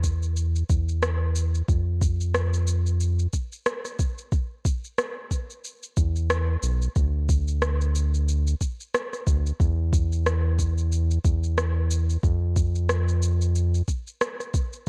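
A 91 BPM groove in 4/4 with 57% swing on the sixteenths carries this meditative, earthy organic downtempo passage, cut from a longer piece, where a soft, tape-warmed electronic kick sits up front beside a quieter electronic shaker and rim click, and a round, deep analog bass blending sawtooth and sine tones holds sustained, fast-attack notes between B1 and F2 until about 13.8 seconds, all set in light reverb with a dark production.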